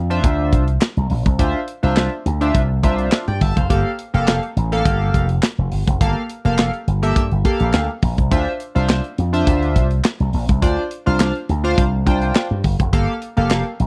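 A dry, close studio sound frames this slick, late-night early-eighties boogie funk at 104 BPM in D minor, where a bright, punchy slap bass through an envelope filter and a glossy, retro chorused polysynth of sawtooth and pulse-wave tones with filter sweeps sit up front alongside an acoustic kit of punchy kick, medium-tuned snare, hi-hat and handclaps with a rolled-off top, holding on Dm9 before moving to Gm9 at 12.9 seconds.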